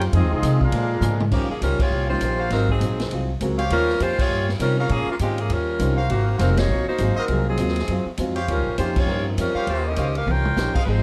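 A fast swing at 201 BPM in 4/4 drives this energetic, brassy big band fragment in Eb mixolydian, cut from a longer piece. The pizzicato upright bass sits up front with a woody, steel-strung tone, while the acoustic drum kit, with its punchy kick and medium-tuned snare, swings on ride, hi-hat, crash, snare and toms, with fills that push the band along. A boxy, freshly strung archtop guitar is picked in the background, its finger squeaks audible. The opening brief phrase over Fm7 and Bb7 pairs a clear, tight trumpet section with soft attacks against a warm trombone line, both with light vibrato, all over sustained chords from a distant, roomy saxophone section. At 1.3 seconds an edgy, up-front saxophone section takes the melody with vibrato over Eb13 and Ab13 harmony, joined by a natural-sounding grand piano with deep bass, and from 2.4 seconds a bright trumpet section adds stabs amid recurring band accents. 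Light reverb frames a dark, warm production.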